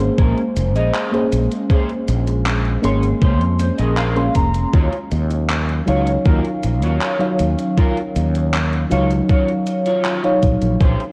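A soft, round FM electric piano with tremolo, lush chorus and tape echo opens this hazy, woozy vaporwave excerpt at 79 BPM in 4/4 alongside a growly, up-front fretless bass with tube saturation and analog chorus, soon joined by a thumpy overdriven electronic kick, a gated 80s drum machine of cabasa, handclaps and hi-hat re-recorded in a large room, a dark, slightly broken-up picked electric guitar riff with chorus and tape echo, a clean electric guitar fill from 3.2 to 4.7 seconds and a very quiet, detuned, nostalgic pad, all drifting from Bbm9 to Ebm9 under light reverb and a worn cassette warble.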